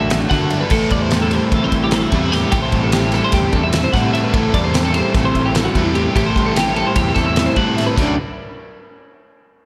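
An up-front, loose indie drum kit with a fat snare, punchy kick and dark cymbals drives this wistful, intricate math rock and midwest emo excerpt in 9/8, as a bright, compressed twelve-string electric guitar picks arpeggios through lush chorus and slapback echo over a biting, double-tracked overdriven guitar riff, a mellow, fingered clean guitar with ensemble chorus sits in the background alongside a growling overdriven bass, and the mix sits in a moderate hall reverb with a big arena sound as the chords move from D to Am7 and return to D at 8.0 seconds.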